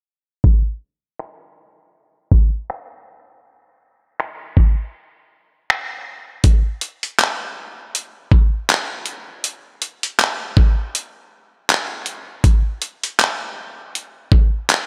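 A dusty, sampler-style soul drum kit opens this romantic, smooth R&B excerpt at 0.4 seconds, with kick drum, hi-hat, finger snaps and handclaps riding a relaxed swing on the sixteenths in 4/4. The kit sits up front, compressed and gritty at its natural pitch, anchored by a thumpy kick. A filter sweep runs through the opening passage, and a break arrives at 4.9 seconds before the groove moves into a new section at 6.4 seconds. Light reverb and a digital ambience frame the sound, shaped by a low-pass filter that softens the top end. The drums carry the clip through to 14.9 seconds, where this cut from a longer piece ends.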